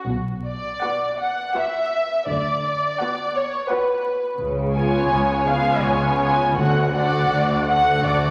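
Wet scoring-stage reverb and a layer of vinyl crackle surround this brief cut from a slow, yearning, melancholic romantic movement for muted string orchestra, unfolding in a rubato 3/4 at 83 BPM over Bm, Bm/D, C#7 and D. A con sordino violin section opens at 0.0 s with a veiled second line, while cellos sit in the background and double basses anchor the bass. From 0.8 s a second violin section carries the melody up front with vibrato, above a lush viola accompaniment that enters at the same moment.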